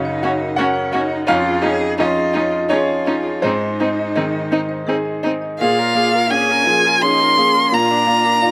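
A single up-front violin carries the melody with rich, vibrato-laden bowing in this fragile, reflective neoclassical excerpt in Bb minor, moving at a rubato 84 BPM in 3/4. A brilliant concert grand with deep bass supplies accompaniment beneath it, while a smooth, distant viola and a focused cello playing a second line add bowed vibrato of their own, and a woody marimba with rosewood bars ripples through arpeggios in the background from 0.1 seconds. The strings and piano carry a slapback echo in a dry outdoor setting with little reverb, as the harmony moves from Gb through Dbadd9/F and Ab before settling onto Bbm7 and Bb in the closing section from 5.6 seconds.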